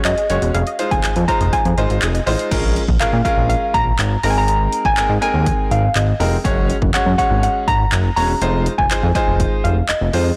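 A blown-out, overdriven recording with light reverb carries this confident, energetic dance-pop cut from a longer piece at 122 BPM in 4/4, where an up-front house drum kit with a punchy kick, handclaps, tape-warm hats and crash joins a fat, nasal, saturated analog bass and a brilliant grand piano, both pumping under sidechain, while a soft, round pluck carries the melody through chorus and digital delay and a very quiet, tight sequenced synth arpeggiates only until 2.4 s over chords moving from Gbsus2 and Fm7 to Bbm7 and Abadd9.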